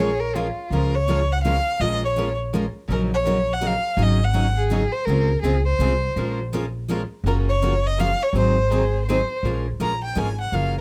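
Acoustic string swing in the jazz manouche style, this bittersweet yet fiery excerpt moves at 165 BPM in 3/4 with a swung lilt, centred on Db major and cycling through chords such as Bbm7, Dbmaj7, Gbmaj7 and Ab7. A rich, focused bowed violin carries the melody up front with vibrato, falling silent briefly before returning at 7.3 seconds and taking a short solo from 9.4 seconds. A second bowed violin, softer in attack and expressive with vibrato and portamento, adds a lower counterline in brief phrases, notably around 4.6 seconds. Two picked steel-string acoustic guitars supply the accompaniment throughout, one bright and full-bodied like a jumbo, the other boxy with fresh strings and audible finger squeak like a parlour instrument. Beneath them a pizzicato upright bass with gut strings sits up front, woody, dark and thumpy, and the whole ensemble is set in light reverb.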